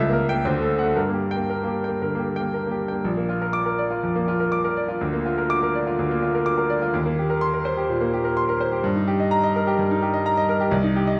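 A moderate recital-hall reverb surrounds this passionate, agitated passage from a classical virtuoso piano study, where a bright, brilliant, smooth grand piano with a vintage character and long sustain sits up front and plays solo in 4/4 with rubato at 112-130 BPM, moving from G minor through D7 and Gm to Bb major at 3.0 s, then through Eb6 and Eb/G harmonies until it stops at 11.2 s.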